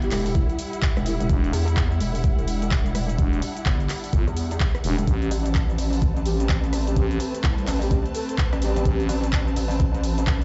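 A swaggering, aggressive bass house excerpt in E minor at 127 BPM with a swung 16th feel opens on a pulsing, detuned wobble bass that is saturated and up front, under an overdriven big-room kit of handclaps, hi-hat, rim click and shaker, a deep, moody pad and a distant, lush bowed string section, while a soft, breathy flute-like lead with vibrato sits in the background. A knocking, tape-warm kick arrives at 0.3 seconds, a thick, growling FM bass joins at 1.3 seconds, the chords move from Emadd9 to Amadd9 at 5.1 seconds, and the lead returns at 6.3 seconds, with sidechain pumping on the basses, pad and strings. The mix is mostly dry with a dark top end and sounds as if played through a big sound system in a bare room.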